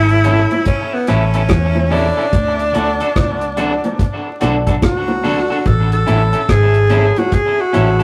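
Sunny and uplifting, this short roots reggae excerpt in A major moves at a relaxed 72 BPM with a swung sixteenth-note feel, moving from A to D and back to A. A clear, punchy tenor saxophone with vibrato carries the melody up front through tape echo, over a round, foam-muted fingered electric bass and a dark, dry drum kit of tight kick, hi-hat and rim click. A slightly broken-up picked electric guitar with tape echo, polished grand piano stabs and soft-handed, low-tuned bongos fill in behind, all set in a rough rehearsal-room sound with tube saturation, vinyl crackle and a wet ambience.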